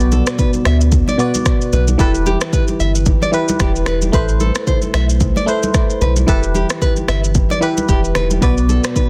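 A biting, percussive FM electric piano with a barking, noisy edge sits up front through this 9.1-second excerpt of a hypnotic, smooth afrobeats groove at 112 BPM in 4/4, with a 58% swing on the sixteenths. It plays a full-bodied chorused accompaniment with fast-attack, decaying notes over a Bm, Em, Amadd9, Em, Bm progression in E minor, tuned to A4 = 438 Hz. Beneath it, a round, sine-like sub bass holds deep, sustained notes up front until 8.8 seconds, while the electronic, produced drum kit drives the pulse with a deep kick, finger snaps, rim clicks and shaker, and a snare roughened by soft clipping. From 0.1 seconds a fingerpicked nylon-string guitar adds a classical, acoustic riff with digital delay, sitting lower in the balance. Ringing, medium-tuned congas played with hard hands stay in the background with a live-room sound. The whole is wrapped in digital ambience and a dense, heavily limited modern master.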